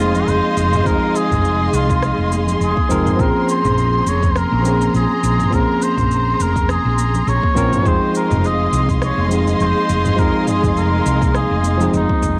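A veiled, cup-muted trumpet carries the soft, jazz-style solo melody with vibrato, colored by tape echo and shimmer reverb, in this smooth sunset chillout passage cut from a longer piece at 103 BPM in Bb minor with a gentle 16th-note swing. A worn, slightly out-of-tune tine electric piano sits up front over a round, dark fretless bass, while a distant bowed string section adds sustained chords with portamento and shimmer, moving through Fm7, Bbm9 and back to Fm7. A layered deep house kit with cabasa, rim click and toms, very quiet ringing congas, and a deep electronic kick entering at 0.9 s complete the lightly reverberant, cassette-recorded home sound.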